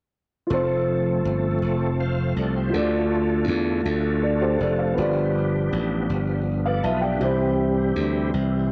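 Hopeful and jubilant, this short gospel excerpt in F major sways in 6/8 at 54 BPM, with a woody, long-sustaining upright piano accompanying, a reedy tonewheel organ with key click, chorus vibrato and a slow rotary speaker holding chords up front, and a growly, punchy slap bass driving beneath, all playing from 0.5 to 8.7 seconds through F, Dm, G7 and C in a lush hall on a homely cassette recording.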